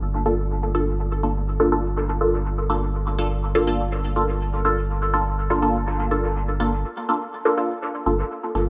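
A round, deep analog bass opens this nocturnal, cavernous dub techno excerpt, joined at 0.3 seconds by muted, detuned sawtooth chord stabs that pluck through a moving notch filter, pass through a phaser and decay into dub echo, both parts sitting up front over a single minor-seventh chord inside a moderate echo-chamber reverb.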